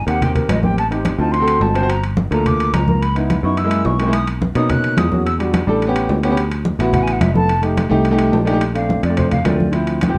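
A hollow, airy concert flute with vibrato and a crisp attack carries a solo through this lively, sophisticated Afro-Cuban jazz excerpt at 214 BPM in a straight 4/4. Beneath it, an intimate concert grand piano with deep bass and audible action noise plays up front as accompaniment, adding a short fill from 8.2 to 8.6 seconds. A picked electric bass, bright and growly with a foam-muted tone, sits prominently in the mix. Congas with a thick-skinned, soft-handed sound and ringing metal-shell timbales drive the percussion. The harmony moves through rich jazz changes such as Abmaj7, Gm9, Bmaj7 and D69 before landing on Bbmaj9 at 8.6 seconds, all framed by a dark, warm production with moderate studio reverb.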